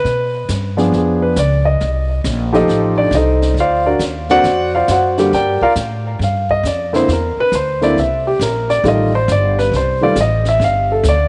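A swinging 4/4 groove drives this short jazz piano trio passage, cut from a longer piece and carrying a warm mood. The grand piano sits up front and carries the melody as a solo across the whole 11.3 seconds, its sound colored by tape echo. Underneath, a pizzicato upright bass with steel strings gives a woody, growly low line, while a brushed drum kit enters at 0.1 seconds with a high-tuned snare, hi-hat and boomy kick, sitting well back in the balance. The harmony moves through chords such as Bdim7, F9, D7alt, Gm7 and C9 before landing on G5 near the end. The trio sounds natural in a small room with light reverb and a softly rounded top end, giving the whole a warm feel.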